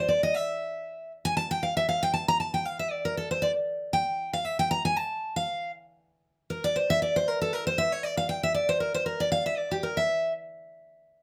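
A picked steel-string acoustic guitar opens this joyful, driving bluegrass passage, cut from a longer piece, playing solo and up front from the very first moment. The tempo is a brisk 234 BPM in 4/4, with a light swing of 55% on the eighth notes that gives the run a lively lilt. The jumbo-bodied guitar sounds bright and full-bodied, its line sitting between G4 and Bb5, with tuning set at A4 = 439 Hz. The same section is played twice, the repeat beginning at 6.0 s, and the guitar falls silent at 10.3 s. Close, detailed microphones capture the picking, set in a moderate studio reverb with a 0.6-second decay.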